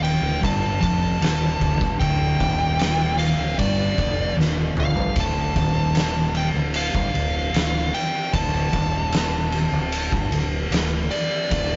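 An oversized, low-tuned acoustic drum kit sits up front in this hypnotic, brooding stoner and doom metal excerpt at 76 BPM, its punchy kick, fat snare, toms and dark ride cymbal saturated and gritty in a pumping stone room, with a drum fill at 4.4 seconds. A compressed, picked fuzz lead guitar carries the melody in D phrygian through distortion and tape echo, while a bright, overdriven fingered electric bass growls beneath it. Two dark, very quiet fuzz guitars hold a picked riff over a Dm chord, all captured as a rough rehearsal-room recording with light reverb and a muffled top end.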